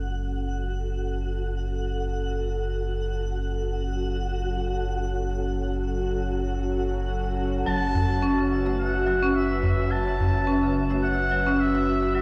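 A 107 BPM pulse in 4/4 with a light 16th-note swing carries this warm, mystical organic downtempo piece in F# minor, cut from a longer work and resting on a single F#m7 chord. From the start, a tense, nasal, string-like drone with vibrato and a filter sweep holds sustained chords over a round, sine-like sub bass up front, while a twinkling granular texture adds sparkling octave-up shimmer. At 7.7 seconds a veiled, cup-muted trumpet enters up front with a soft, jazz-style solo melody through delay, alongside percussive hard-mallet marimba arpeggios with a boxy character, and from 7.8 seconds a crisp metal-shell darbuka sits in the background, all in a lush hall reverb that sounds as if played through a big sound system in a bare stone room.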